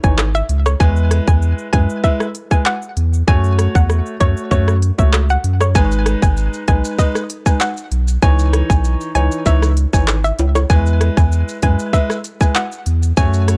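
The recording has a dark production sitting in a digital ambience, with its top end capped at 10.5 kHz. It is a bouncy, tough dancehall groove at 97 BPM in 4/4 with a straight feel, cut from a longer piece and moving through C#madd9, E, F#m and G#m. An electronic island pop drum kit sits up front with a tight kick, smooth hi-hats, handclaps, rim clicks and shaker, all pushed through overdrive, while a round, deep sine sub bass with a fast attack holds the low end just as prominently. A clear, intimate grand piano plays the accompaniment with audible action noise and long sustain, pumping under sidechain. On top, a hollow, nasal square-wave pluck carries the melody, detuned and layered with noise and a sub octave, its short filtered decay thickened by chorus and digital delay. Bright, close maracas and timbales played with hard hands join at 5.8 s.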